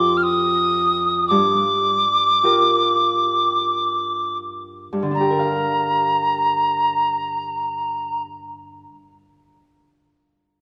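Haunting and mournful, this brief passage from a longer Celtic slow air unfolds in a three-beat metre with a free, rubato feel that slows over the first 5.2 seconds. A mellow tin whistle carries the melody high in its register, its airy metal tone coloured by vibrato, tongued attacks and a soft chiff, sounding at once up front and distant. Beneath it, a Celtic harp supplies fingerpicked accompaniment that spans a broad range, its ringing, acoustic voice sitting close to the listener. The harmony moves from Fadd9 to Gm7, giving the opening a suspended, yearning quality before settling into a darker colour. A long, wet church reverb surrounds the performance, letting the whistle stop at 8.2 seconds while the harp lingers until 8.9 seconds.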